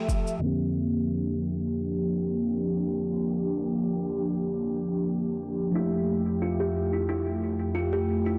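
A lightly swung 16th-note groove in 4/4 drives this smooth, relaxed sunset chillout excerpt, carried by an electronic, layered cabasa that sounds overdriven and re-recorded in a small room. A mellow FM electric piano supplies soft, round, full-bodied accompaniment with a dark tone, treated with chorus, cassette-tape colour and delay. Beside it, an airy, breathy pad holds detuned sustained chords up front with a slow attack and long release. Both keyboard parts carry a filter sweep from 0.4 s, moving from a Bb69/F chord to Fmaj9 at 5.8 s. At that same moment a woody, hollow-box kalimba enters with ringing, thumbnail-plucked arpeggios through delay. The whole mix sits in a lush hall reverb and has a blown-out, overdriven, filtered recording character.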